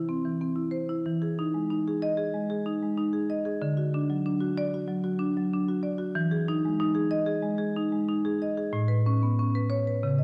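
A dark production sets a solo marimba up front in a moderate scoring-stage reverb, its 1.6-second decay lending the instrument a sense of space. This contemporary classical piece moves at 93 BPM in a straight 4/4, with a warm, flowing mood, and it is a short cut from a longer work running just over 10 seconds. The marimba, played with medium hard mallets on rosewood bars, has a woody, smooth tone and ranges from A2 up to D#5. Its harmony opens on C, then passes through Emaj7, D and back to Emaj7 before settling on Aadd9 at 8.8 seconds.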